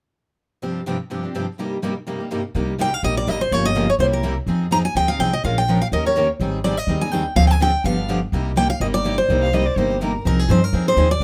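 A bright, up-front picked steel-string guitar carries the melody from 2.8 seconds in this bittersweet, swinging excerpt of fast acoustic string swing at 249 BPM in C minor, over two picked acoustic guitars accompanying the minor-key changes, a woody, thumpy pizzicato upright bass, and a brief smooth, bowed violin line with vibrato at 9.4 seconds, all in a light reverb.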